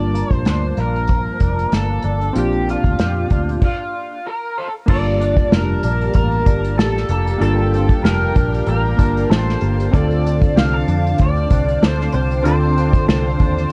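An overdriven slide guitar carries the melody with a bright, lush chorus sheen in this nostalgic, sunny bedroom-pop fragment, set over a lightly swung groove. A twangy clean electric guitar with warbly pitch drift and analog keys blending square, sawtooth and ring-modulated tones fill out the chords, above a round, foam-muted bass and an airy, up-front acoustic kit played with bundle sticks and dark cymbals. After a brief stop at 3.6 seconds, a phased string-machine viola pad slips in at 4.9 seconds in the background, and the whole piece carries light reverb and a cassette tape character.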